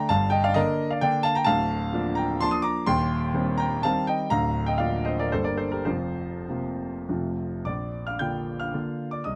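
A dotted triple-time dance moves with free rubato, giving this short classical fragment from a longer romantic piece a rustic yet proud character. A solo grand piano, warm and natural in tone and placed up front by close, detailed microphones in a dry room, covers a broad span from deep bass to bright treble. Around 7.7 seconds the music arrives at a new phrase just before the clip ends at 9.4 seconds.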